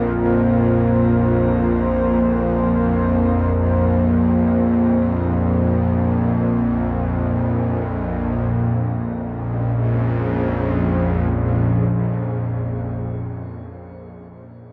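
Ambient in free time and Bb minor, this ominous, unsettling excerpt from a longer piece sets a deep, moody pad of sustained chorused chords against a tense, string-like bowed drone that sits bright and up front with vibrato and a ring-modulated edge. The harmony hangs on a rootless Ab6 over Bb before settling onto Bbm7 at 8.5 seconds. Everything is bathed in a huge, wet reverb, and the worn cassette-tape sound adds a warbling pitch drift.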